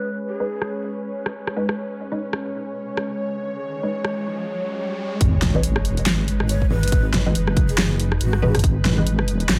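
A low-passed haze with light reverb hangs over this dark, heavy cut of deep dubstep, which moves in a half-time feel with swung sixteenths. A tense, string-like bowed drone with vibrato holds sustained chords throughout, while a breathy, unsteady, end-blown ney floats a brief melody through dub echo at the start. Muted, full-bodied chord stabs with a detuned sawtooth bite come in under phaser, ensemble chorus and echo. An up-front dubstep kit brings a huge snare, bright hats, handclaps and rim clicks, and filter sweeps run across the drums and drone through the opening, with a riser arriving at 3.7 seconds. At the drop at 5.2 seconds, an impact and sub drop land as a deep, compressed wobble bass and a tight, layered kick push forward, with soft-handed, vintage congas echoing in the background. The ney returns at 6.5 seconds over the heavy low end before the excerpt cuts off.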